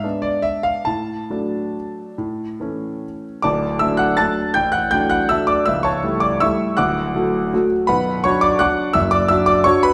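Set in a moderate recital-hall reverb, an intimate, up-front concert grand with deep bass and audible action noise plays a sparkling, graceful classical waltz alone in D major and 3/4, its rubato tempo flexing between 133 and 176 BPM across this roughly 9.9-second excerpt, which moves from an opening diminished chord into a second section at 3.4 seconds.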